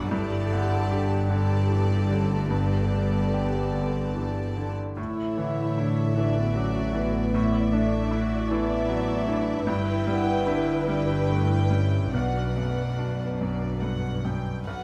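This cinematic film-score passage for orchestra opens with nearly every part sounding at once: a solo French horn carries a longing melody with light vibrato over a brilliant, intimate grand piano whose action noise and long sustain sit close to the ear. Above, the violin section floats a pure, sul tasto second line, while dark, woody violas add lush accompaniment in the background and a very quiet concert harp rings out thumb-plucked arpeggios. Cellos and double basses anchor the bass with soft-attacked, bowed tones. The tempo is a slow, rubato 6/8 at about 46-52 BPM in B minor, moving through Gadd9, Asus4, Em/G and Bm7 for a bittersweet, emotional feel. The horn falls away at 13.4 seconds, and a faint violin melody note appears at 14.7 seconds as this fragment of a longer piece ends, all captured with close, detailed microphones and light reverb.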